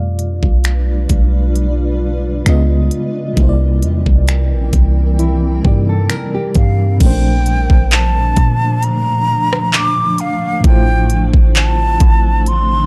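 Dark and dry, this moody, sensual contemporary R&B excerpt at 66 BPM layers a mellow FM electric piano with tremolo and a blurred, evolving granular cloud pad over a boomy, sine-toned 808-style bass and an up-front, overdriven trap kit of knocking kick, crisp hi-hats, finger snaps, handclaps, rim clicks and crash, while a full-bodied, thumb-plucked nylon-string guitar plays arpeggios from 5.2 to 7.0 seconds and a breathy concert flute with vibrato and tape echo takes the melody from 6.6 seconds.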